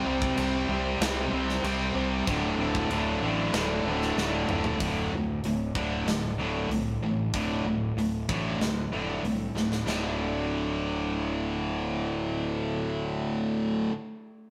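A straight 4/4 pulse at 95 BPM drives this menacing, heavy hard rock excerpt, where an up-front overdriven guitar with spring reverb plays a riff alongside a bright high-gain guitar in the background, a very quiet double-tracked distorted guitar and gritty organ chords through a slow rotary speaker until 4.8 seconds, a growly fuzz bass, and a tight big-room metal drum kit that plays fills before stopping at 10.0 seconds, all in a rough rehearsal-room sound with stone room reverb.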